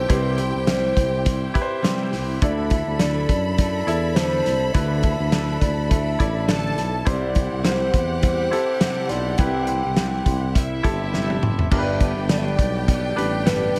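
A lightly swung sixteenth-note groove in 4/4 drives this uplifting piano-driven pop excerpt, with a loose, up-front indie drum kit entering at 0.1 s, its fat snare, tight kick, dark cymbals and toms rolling into a fill at 11.1 s, while a mellow, punchy tuba carries the bass with light vibrato. A clear concert grand piano with deep bass and short sustain supplies the accompaniment, and a dark, full-bodied fingerpicked steel-string acoustic guitar plays a riff in the background. On top, a hollow, woody synth lead with soft attack, vibrato and chorus sings the melody over a rich, expressive studio violin section bowing a second line, both bathed in plate reverb as the harmony moves from C through Dsus2 and back to C before landing on G.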